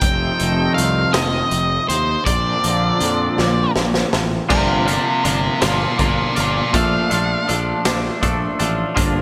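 A slow 6/8 sway at 54 dotted-quarter beats per minute drives this bittersweet, cool slice of indie rock, cut from a longer piece, with the harmony moving from F7 and Bbadd9 into Gm7 and Bbmaj7. The raw garage drum kit sits up front, its punchy kick, medium-tuned snare, hi-hat and crash sounding gritty and saturated in a pumping small room with gated reverb and a rolled-off top, and a drum fill runs from 3.4 to 4.5 seconds. Underneath, a fingered electric bass growls with overdriven fuzz, while a twelve-string electric guitar rings out a clean, compressed riff through lush chorus and a twangy electric guitar picks another riff further back, touched with subtle chorus and digital delay. A dark, distorted octave-fuzz lead guitar carries the melody up front from the start with distortion and digital delay; a solo section begins at 4.5 seconds, and the lead guitar drops out at 7.5 seconds. The whole mix has a bright 1980s-style digital sheen, bathed in a moderate, lush hall reverb.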